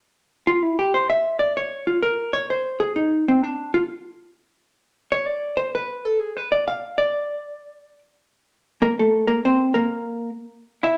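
A dark, clean, compressed hollow-body electric jazz guitar enters up front at 0.5 seconds, playing a sophisticated, playful, picked solo in swung 4/4 at 130 BPM through a large studio reverb, touching an A minor chord at 8.9 seconds before this excerpt from a longer piece ends at 11.0 seconds.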